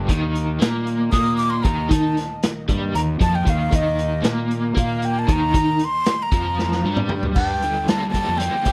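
A breathy, mellow flute with slapback echo carries the melody from 1.1 seconds over a bright, double-tracked overdriven guitar riff with tremolo, a round fuzz bass, a vintage drum kit with a punchy kick, dark cymbals and a drum fill at 6.6 seconds, and a very quiet sawtooth string machine on cello chords that stops at 7.3 seconds, in this hypnotic, trippy psychedelic rock excerpt at 231 BPM in 7/8 that moves to a G minor chord at 7.4 seconds.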